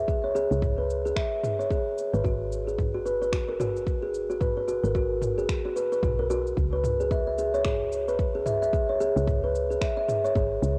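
A swung sixteenth-note groove in 4/4 carries this hypnotic, earthy organic downtempo passage, cut from a longer piece. A deep, up-front electronic kick anchors the beat, and a layered deep house kit adds finger snaps, shaker and toms. A soft, round woody FM bass with a fast attack and mellow decay pumps through sidechain compression. Up front, a kalimba plays ringing arpeggios in a fingertip-plucked, hollow, boxy tone, filtered, dusted with cassette tape character and trailed by tape echo. The harmony settles from C#5 onto G#m7 at 2.2 seconds and then C#m at 6.6 seconds. A moderate spring reverb and a home cassette recording give the sound an intimate, lo-fi glow.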